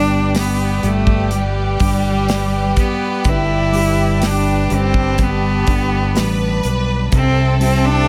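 A small room gives this short cut from a longer pop ballad an intimate, close sound, with a bright, biting solo cello sitting up front and carrying the melody with intense vibrato between G3 and E4. It moves at a slow 62 BPM in 4/4 with a straight feel in G major, tender and emotional, resting on G until a shift to C at 7.1 seconds. Behind the cello, a clear, focused violin section plays a distant second line with delay, while a dark, reedy string section with a gut-string, period-style tone holds smooth sustained chords high above. A worn, slightly out-of-tune electric piano with a tine sound comes through a combo amp in the background, and a thumb-plucked classical nylon-string guitar adds arpeggios with delay. A punchy, direct fingered electric bass sits up front, and an airy, polished acoustic drum kit with a tight kick, medium-tuned snare and hi-hat plays from 0.3 to 7.8 seconds.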